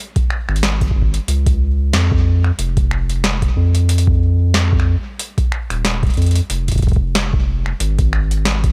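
A lightly swung sixteenth-note groove in 4/4 drives this brief, melancholic and intricate IDM passage, cut from a longer piece. The booming analog drum machine enters at 0.2 seconds with finger snaps, metallic hi-hats and a crisp snare, roughened by overdrive and trailed by tape echo. Alongside it, an electronic kick drum supplies a deep, overdriven low end, and both drum parts carry the character of being played back and re-recorded in a small room. At 0.5 seconds a round analog bass joins, sitting up front with a dark, sustained tone that blends triangle and sine qualities and speaks with a fast attack. The bass is the most prominent part, while the drum machine sits further back. The overall sound is dry and close, with little reverb, and all three parts carry on together until 8.7 seconds.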